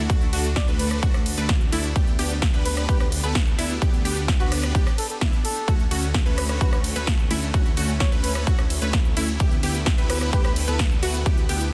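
Triumphant and anthemic, this festival progressive house passage pumps with sidechain across its supersaw pad, detuned saw bass, unison pluck arpeggios and huge, euphoric supersaw lead riff, with the pad's lush, phaser-treated chords and the bright pluck sitting in the background, while tape echo trails the pluck and lead. A punchy, up-front electronic kick and a layered big-room kit of crisp hi-hats, ride cymbal, rim click and snare, both re-recorded in a large room, drive the straight 4/4 groove over the thick, saturated bass with chorus. From 0.6 s a dark, veiled trumpet with a bucket mute plays a jazz-style solo melody with light vibrato and tape echo, in a dense, heavily limited mix with little reverb.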